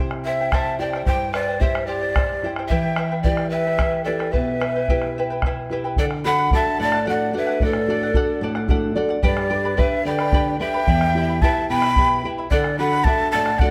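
A moderate recital-hall reverb gives this short Andean folk passage a roomy, softly lingering sound, with the breathy large quena and the nylon-string guitar sitting up front. At 73 BPM in 6/8, the mood is melancholic and wistful, moving from C and Em toward D, G, Em and back to D. The wooden large quena carries the melody in a breathy, straight tone with tongued chiff, rolled-off highs and a slightly unsteady quality, touched by tape echo. Just behind it, the bamboo pan flute adds a second line with vibrato, a crisp attack and lifted highs, also carrying tape echo. The fingerpicked nylon-string guitar supplies a full-bodied, deep classical accompaniment and steps forward with a fill from 8.4 to 9.2 seconds, while the fingerpicked charango adds a bright, shimmering layer from its doubled strings. Underneath, the bombo sounds dark and deep, as if in a small room.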